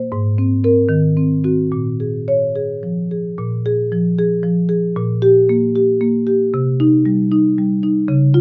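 Contemporary classical for solo marimba with soft mallets, a hypnotic, flowing passage in a rubato 6/8 around 71-79 BPM in Bb dorian, cut from a longer piece, where the woody, round, mellow marimba sits up front in light reverb, ranging from Ab2 to Db5 as chords such as Abadd9, Ebm6 and Bbm7 give way at 3.4 seconds to a second section moving through Bb5, Gm/Bb and Cm.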